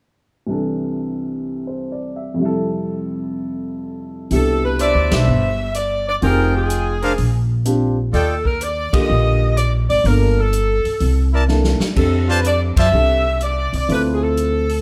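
A swung 4/4 pulse at 125 BPM drives this joyful, brassy big band swing excerpt in C major: a polished, woody upright piano plays alone from 0.5 s, then at 4.3 s a clear saxophone section takes the melody with vibrato over a growly, thumpy pizzicato upright bass and a distant, roomy drum kit with a boomy kick, while a bright, tight trumpet section adds stabs, the band hits accents, and the drums play a fill at 11.5 s, all in light reverb over lush extended chords.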